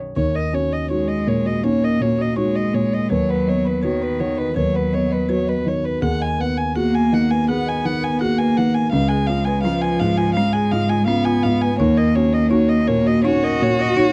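A dark, mellow grand piano opens this melancholic, longing fragment of neoclassical piano and strings in a free, rubato 4/4, joined almost at once by a veiled, con sordino violin singing the melody with vibrato and a woody, hard-mallet folk marimba playing bright arpeggios through tape echo in the background, while a muted cello enters at 0.9 seconds with a second line marked by portamento, all captured in a dry, close 1970s-style studio sound with light reverb.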